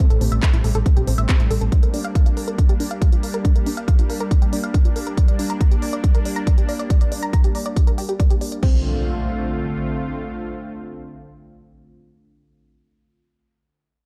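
A punchy, up-front electronic kick drives this emotional uplifting trance excerpt in D minor at 139 BPM, joined by a house kit with crisp hats, handclaps and crash cymbal, while a round FM bass makes a brief appearance under the opening Am7. A tight, wave-folded sequenced synth spins plucked arpeggios through chorus, phaser and tape echo over a lush, detuned unison pad holding sustained chords through Bb6 and Gm, with sidechain pumping breathing through the pad, synth and bass. At 8.6 s the drums and arpeggio drop away, leaving the pad and an electronic impact to ring out over Dm7 in a dark, digital ambience.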